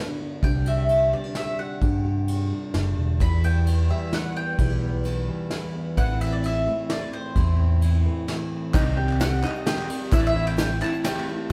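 Uplifting and nostalgic, this excerpt of indie folk in a straight 3/4 at 130 BPM opens with a bright, double-strung mandolin melody over fingerpicked steel-string acoustic guitar, a round, punchy electric bass up front and a natural brush kit with a punchy kick, moving through Csus2, Em and Am. A shimmering, octave-doubled twelve-string guitar joins at 3.2 seconds. At 8.7 seconds the fingerpicked guitar drops out as the chords darken to Cm, and a mellow, plunky open-back banjo adds arpeggios alongside a very quiet, grainy egg shaker and crisp, distant group handclaps, all heard as a band playing live in a stone room with a lingering reverb.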